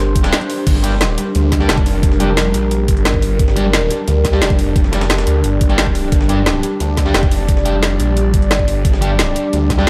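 A straight 4/4 pulse at 176 BPM drives this mechanical, aggressive dark technical drum and bass in G minor, where a knocking, overdriven electronic kick and a layered kit of woody snare, bright hats and crash cymbal, backed by a very quiet, gritty, pitched-up breakbeat sampler kit, arrive at 0.2 s beneath an up-front, growling detuned saw bass, a brooding analog pad with chorus, phaser and sidechain pumping, double-tracked fuzz guitar stabs with tape echo, and a faint blurred granular cloud pad that drops out at 0.7 s as the drop hits, all bathed in a dreamy, reverb-soaked hall.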